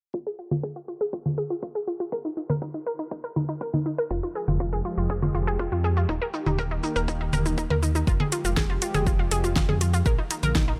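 Dark and driving, this melodic techno cut at 121 BPM in F minor opens with a punchy electronic kick, an overdriven deep house kit of congas, shaker, metallic hats and a fat snare, and a round, bright analog pluck spinning arpeggios through chorus, cassette-tape grit, digital delay and a filter sweep that runs until 8.1 seconds. A deep, rumbling detuned saw bass arrives at 4.1 seconds, followed by a lush, thick unison pad with chorus and phaser. The pad, bass and pluck all pump against the kick as chords move from Fm through Bbsus4, Fmadd9 and Eb, all inside a digital ambience.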